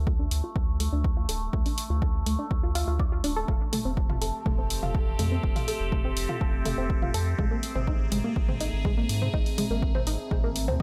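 A tight, driving sequenced synth carries the arpeggios in this melancholic, dramatic melodic techno excerpt at 123 BPM, its detuned sawtooth tone run through chorus, phaser and dub echo under a filter sweep lasting the whole 10.8 seconds. Beneath it, a round, dark analog bass with tube saturation, a punchy layered electronic kick, and a deep house kit of hi-hat and toms drive the track, while a resonant drone on A3 with moving overtones and ring modulation hums underneath. From 4.1 seconds a bright, morphing wavetable pad adds sustained chords over a Dm, F, G#add9 progression, with sidechain pumping on the bass, drone, arpeggios and pad inside a light digital ambience.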